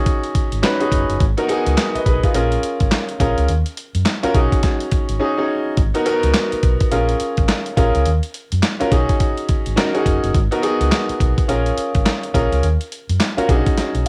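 A clear, smooth concert grand piano opens this punchy, confident new jack swing excerpt, its vintage tone laying down rich extended minor and sixth chords up front with short sustain and a cassette-tape character. A gritty, compressed sampler-style drum kit with a thumpy kick, handclaps, hi-hat and a medium-tuned snare, also on cassette and captured in a large room, drives the swung groove alongside a dark, round fingered electric bass. The drums drop out briefly at 5.2 seconds, and the piece ends on a short break with a piano fill at 13.8 seconds, all wrapped in a homespun cassette recording with moderate reverb.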